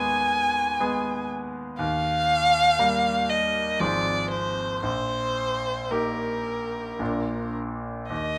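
Classical romantic music for violin and grand piano, this serene, lyrical passage moves in a slow, rubato 3/4 at roughly 54-62 BPM in Eb major. A single bowed violin carries the melody throughout all 8.4 seconds, its tone rich, smooth and even, with vibrato and a silken top, sitting up front and louder than the piano. The grand piano supplies the accompaniment from the low bass up into the violin's register, sounding bright, brilliant and polished, with long sustain and a present, forward placement. The harmony opens on Abm over Eb, settles onto Eb at 1.8 seconds, and passes through Fm over Ab and Eb over Bb before arriving on Bb at 7.0 seconds. A moderate reverb from a large studio wraps the duo, and the passage is cut from a longer piece.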